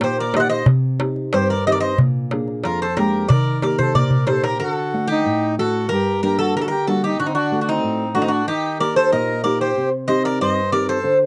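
The Greek bouzouki carries the melody up front, its picked double strings ringing metallic and warm, with some strings doubled at the octave. This short cut from a longer piece of Greek folk for bouzouki band sits in D phrygian dominant, in 2/4 with a straight feel at 92 BPM, and the tempo gradually speeds up over its 11 seconds. The mood is cool and bittersweet. A reedy, dark accordion plays a smooth second line beneath, while a classical nylon-string guitar, up front, gives warm, thumb-plucked accompaniment across a broad range. A crisp, small metal-shell darbuka sounds high and dry up front, plays a fill from 3.8 seconds and stops at 4.6 seconds as the second section begins. The harmony moves through Eb, Cm and Bb7 back to Eb, then turns to D, Gm and D again before settling through Eb to Cm, all captured in a dry, close 1970s-style studio sound with a moderate booth ambience.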